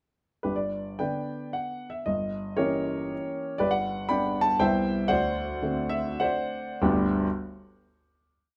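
Heard close up and in fine detail with a light reverb, this short, complete romantic classical piece presents a grand piano with a smooth, vintage tone, placed up front. In a rustic, proud triple-time dance with dotted rhythms and a free rubato, the piano carries a tune over bass and chords that stress the second or third beat, passing through a diminished chord and a major seventh before a dominant seventh. The pace slows from 2.9 s until the final chord arrives at 6.8 s.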